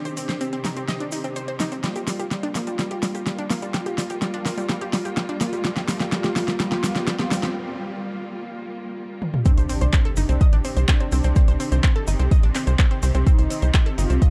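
A straight 4/4 pulse at 126 BPM carries this melancholic, hypnotic melodic techno cut in C minor, built on Cm and Gm7: a tight, punchy sawtooth sequencer bass sits up front beside a deep house kit of fat snare, metallic hats, handclaps and toms, while a grainy egg shaker ticks in the background. Bright, warbling detuned pluck arpeggios carry digital delay, and a round synth brass melody with chorus, vibrato and tape echo rides over smooth, rich symphonic strings, all three pumping under sidechain. A filter sweep on an analog polysynth builds through the opening, and a very quiet riser and impact arrives from 4.4 seconds, leading through a break into the drop at 9.5 seconds, where a deep, layered kick drum lands up front in a dark production with light reverb.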